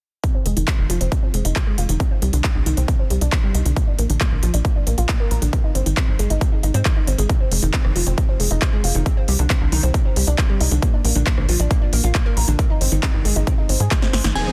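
A dense, heavily limited modern master with little reverb carries this euphoric, driving uplifting trance excerpt at 136 BPM, where a punchy, tape-warm electronic kick sits up front beside a layered big-room kit of crisp low-pass-filtered hats, punchy snare, handclaps and rim click, all re-recorded in a large room. A tight, nasal sawtooth-and-square sequencer bass with tube saturation and sidechain pumping drives beneath round, detuned analog pluck arpeggios that carry chorus, dub echo and a filter sweep across 0.2 to 14.4 seconds, moving through Fm7, Cmadd9, Bb and Ab. A drum fill and band accent lead to the final moment at 14.4 seconds, where a glassy FM synth bell with phaser, a lush, distant string section and an up-front downlifter arrive just as the cut ends.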